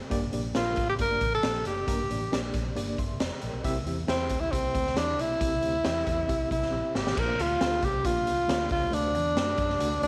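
Reedy, slightly out-of-tune electric piano with a fast tremolo sits in the background at 0.1 s, alongside a dark, foam-muted electric bass and a gritty, saturated garage drum kit with a high-tuned snare and punchy kick in a pumping stone room. A breathy tenor saxophone joins up front at 0.6 s, playing a jazz-style solo with vibrato and scooped notes in this danceable, uptempo 1960s-style soul cut at 136 BPM. A drum fill at 6.7 s leads the harmony from Gm and C into Bbadd9 and D7, all bathed in moderate echo chamber reverb.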